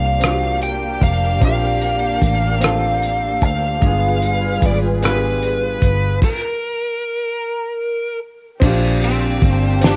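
A bluesy, overdriven lead guitar carries the melody up front in this sensual, intimate slow R&B excerpt, set in 6/8 at 50 BPM in Bb major. Beneath it, a clear, worn grand piano and a lush, bowed string section with vibrato hold the harmony, and a round, foam-muted fingered bass sits up front. A cloth-damped, thuddy drum kit with a fat snare and dark cymbals enters at 0.2 seconds. The band breaks into a stop from 6.2 to 8.6 seconds before the harmony returns, and the dry home cassette recording lends the piano, strings and saturated drums a tape colour.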